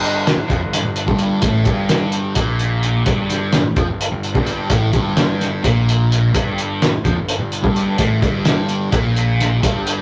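Psychedelic rock in 7/8, dark and trippy, built on a thick, double-tracked fuzz guitar riff with distortion and phaser that sits up front over a single G minor chord. A round, overdriven fuzz bass rumbles in the background, while a cloth-damped, thuddy drum kit with a fat snare, tight kick and hi-hat sounds muffled and gritty, its top rolled off. The rough rehearsal-room recording carries tube saturation and a wet studio reverb, and this short passage is cut from a longer piece.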